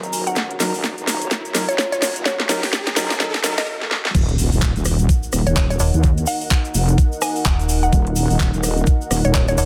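A knocking, tape-toned electronic kick sits up front in this bouncy, aggressive bass house excerpt in Eb minor at 127 BPM, with a 60% swing on the sixteenths and tuning set to A4 = 437 Hz. The opening is a build-up: the garage kit adds a cracking snare, metallic hats, handclaps, rim clicks and crash alongside drum fills. Meanwhile a hollow, organ-like stab with tape echo sits under a filter sweep, and a riser climbs in the background until a brief stop at 3.7 seconds. A heavy, resonant wobble bass of detuned sawtooth and sine layers, with tube saturation and sidechain pumping, runs from the very start and carries on when the drop lands at 4.1 seconds with an impact. A metallic, digital FM bass with overdrive joins at 5.8 seconds. Throughout, a deep, moody analog pad holds sustained chords, and a woody, round mallet-like pluck carries the melody through phaser and tape echo. Far back, a grainy, bright tube shaker and a warbling, nostalgic lo-fi pad with its own reverb fill out the sound, which has a light reverb over the whole mix.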